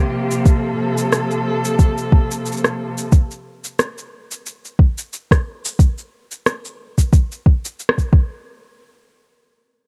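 Folktronica with a warm, playful mood, cut from a longer piece: a bowed chamber string quartet, one player per line, holds an expressive Gm7/C chord with vibrato and portamento until 3.1 s, while an electronic shaker and rim click enter at 0.3 s and a soft, up-front electronic kick carries the lightly swung groove through to 8.3 s in a dry sound.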